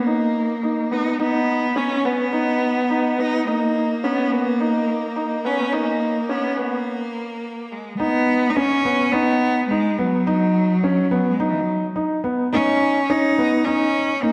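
A straight, steady four-beat pulse carries this cinematic, hypnotic piece of electronica, cut from a longer work. A single bowed cello plays the melody up front, its tone rich and focused with vibrato and a smooth top softened by a low-pass filter. Beside it, a warm baby grand piano repeats a riff in a similar middle register, its open sound ringing with long sustain. The passage builds until a brief break at 6.9 seconds, then drops into a new section at 8.0 seconds, where both instruments carry on to the close. A dark production, thinned at the bottom by a high-pass filter, sets the pair in the generous wash of a scoring-stage reverb.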